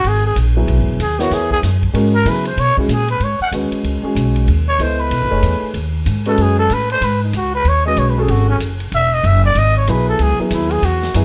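Modal jazz at a brisk 189 BPM in 4/4 with a swung eighth-note feel, this short section from a longer piece carries a cool, spiritual mood, settling into G# phrygian from 3.2 seconds. A growling trumpet takes a solo throughout, its raspy, gritty tone marked by vibrato and scooped notes, sitting up front yet with a distant, roomy quality. Beneath it, a pizzicato upright bass with steel strings sounds woody and forward, while a vintage drum kit keeps time on hi-hat, ride, snare and punchy kick, its dark cymbals and rolled-off top set further back in the mix. A smooth grand piano joins at 0.6 seconds with vintage-toned accompaniment. The harmony moves from E to G#m7 and then C#m at 8.3 seconds, captured with close, detailed microphones and a light touch of reverb.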